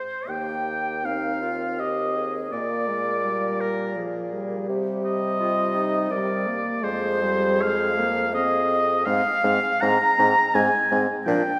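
A clear, up-front oboe carries a second line with light vibrato through this tender, slow romantic movement for wind quintet in Eb major, cut from a longer piece and moving at 83 BPM in a rubato 3/4. An airy, hollow concert flute sings the melody with tongued notes and vibrato from the background. From 0.3 seconds a close-miked clarinet, a warm French horn and a bassoon bass add accompaniment, while a church or concert hall and a wet reverb give the ensemble a soft glow as the chords drift from Eb through Cm7 and Fm7 to Fm/Ab.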